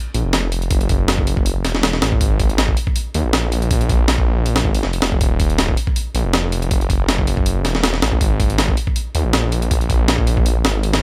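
A swung 160 BPM breakbeat of thumpy kick, medium-tuned snare and hi-hat from a gritty, compressed sampler-style drum kit drives this raw, nostalgic drum and bass and jungle excerpt in Eb minor. A thick, menacing detuned saw bass, saturated and beating, enters together with the drums at 0.1 seconds, and both parts sit up front in a dry mix.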